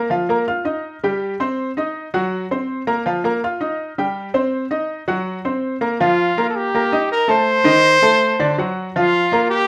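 A rough home demo with wet studio reverb carries this fiery, driving Latin piece at 163 BPM in 4/4, where a bright, intimate baby grand piano with audible action noise and short sustain plays up-front accompaniment from the start, joined at 6.0 seconds by a punchy, roomy pop-style trumpet melody with vibrato that runs until 9.7 seconds.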